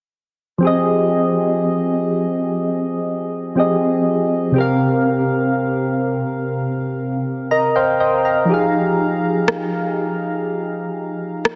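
A soft, round electric-piano-like synth opens at 0.6 seconds, laying down a late-night, moody contemporary R&B bed in a slow, straight 4/4. Its tone is dark and gentle, with a fast attack that decays, colored by chorus and phaser, and it sits up front as it moves from Fm7 to C7sus4 and back to Fm7. Around 7.0 seconds the keys add a short fill before the return to the opening chord. At 9.5 seconds a dry, tape-warm electronic rim click enters up front, quieter than the keys. A lush hall reverb surrounds the keys in a dense, heavily limited modern master, and the excerpt is cut from a longer piece.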